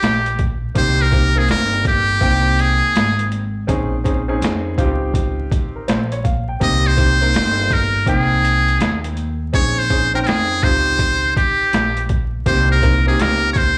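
Nocturnal and mellow, this jazz-hop fragment from a longer piece sets a buzzy, close-miked muted trumpet with slapback echo up front, playing forceful scooped notes with light vibrato over smooth, vintage grand piano chords, a woody, growly pizzicato upright bass and a gritty, overdriven boom bap drum kit with a thumpy kick and high-tuned snare, all swinging through rich extended chords and heard as a live club gig through the PA, with vinyl crackle on top.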